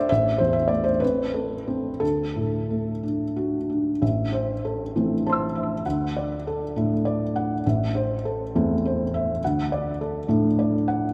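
A felt-muted upright piano plays alone from the first moment, its soft, dark, mellow tone and audible action noise sitting up front under an analog delay, as this intimate, wistful excerpt of neoclassical minimalist piano drifts in rubato 6/8 at around 58-70 BPM in A dorian, alternating Am and D across a span from A1 to E6, with a new section arriving at 4.0 seconds, all soaked in a dreamy plate reverb until it is cut off at 11.1 seconds.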